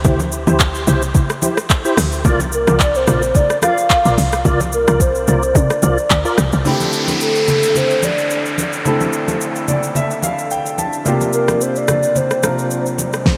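A tight, punchy log drum bass drives this soulful, deep amapiano excerpt at 109 BPM in D minor, joined by overdriven R&B drums with a fat snare and metallic hats, low-tuned congas, chorus-soaked tonewheel organ stabs through a slow rotary speaker, and a hollow, woody clarinet-like synth lead from 2.5 s, before the bass and organ give way at around 6.7 s to a clear grand piano with a fill, plus a downlifter and riser, all bathed in a dreamy, reverb-drenched mix.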